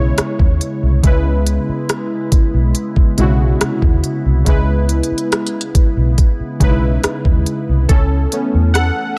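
Detuned sawtooth keys with chorus open this moody, late-night contemporary R&B excerpt at 70 BPM in C# minor, alongside a glassy, ethereal FM pad holding slow-blooming chords through ensemble chorus and reverb, and a dark, foam-muted fingered electric bass sitting up front. At 0.2 seconds a smooth electronic drum kit enters with a knocking kick, silky hi-hats and rim clicks, as the harmony moves from C#m9/B through E69/B to C#m7. At 7.9 seconds the keys step forward for a brief solo over Aadd9/C#, all set in a digital ambience.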